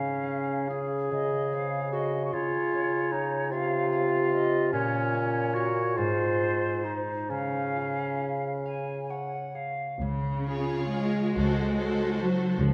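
A serene, lyrical classical passage in 6/8 with free rubato opens on a bright, up-front clarinet and a pure, silvery concert flute sharing second lines, over a distant bassoon accompaniment and ringing, fingerpicked harp arpeggios in a wet concert hall. At 10.0 s a focused double bass section and an expressive cello section take up the bass. At 10.5 s a smooth violin section carries the melody with vibrato, while a second violin section and a lush viola section with portamento add inner lines, before this fragment of a longer piece ends.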